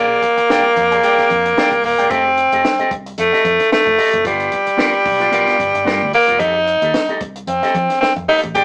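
This short funk excerpt has a rough rehearsal-room sound, as if heard through a small speaker, with a moderate, brief studio reverb around it. At 112 BPM in 4/4 with a 16th-note swing, the mood is driving and cool, moving through Bb13, F9, G7#9 and back to F9. Up front, a raspy, gritty tenor saxophone carries the melody between G3 and G4, forceful and punchy in a pop style with light vibrato. Beneath it, a dark, clean electric guitar is picked through an envelope filter for the accompaniment, while a vintage fingered electric bass, foam-muted, round and amped, holds the low end well down in the mix. A compact cocktail drum kit joins at 0.2 seconds, dry and acoustic, with a high-tuned snare, punchy kick and hi-hat.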